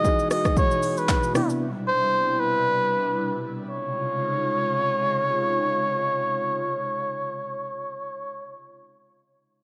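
Amapiano at 115 BPM with a lightly swung 16th-note feel, this warm, soulful fragment of a longer piece features a mellow, veiled cup-muted trumpet melody with light vibrato and digital delay, sitting up front over an airy, breathy pad of detuned chords colored by chorus and phaser. During the opening drop, as the harmony moves from Emaj9 to Cmaj9 at 1.4 s, round, dark electric-piano-like synth keys with chorus and a punchy deep house kit play only until 1.6 s; the kit brings kick, handclaps, rim click, smooth hi-hat and shaker with gritty 12-bit sampler character. After that the trumpet and pad carry on alone to a Dbmaj9 at 3.7 s, set in a light digital ambience.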